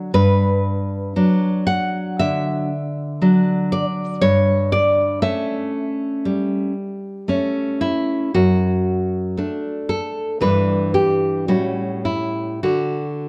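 A solo nylon-string guitar, fingerpicked and up front with a full-bodied tone, fresh strings and the occasional finger squeak, carries this romantic classical excerpt at a slow, rubato 58 BPM in 4/4. The mood is nostalgic, moving from Gmaj7 through A7/G and D/F# before settling on D at 12.6 seconds. A moderate scoring-stage reverb lends the dark, warm production a gentle sense of space.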